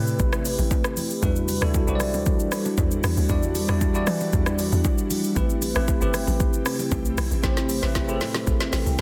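Late-night and deep, this amapiano excerpt sets a bell-like tine electric piano with phaser up front over a hollow, bouncy log drum bass, a layered deep house kit with a deep kick and woody, softly clipped snare, faint ringing congas and bongos, and an ethereal pad pumping in the background through Am9 and Em9 chords, before a drum fill from 7.4 seconds and a brief electric piano fill at 8.5 seconds.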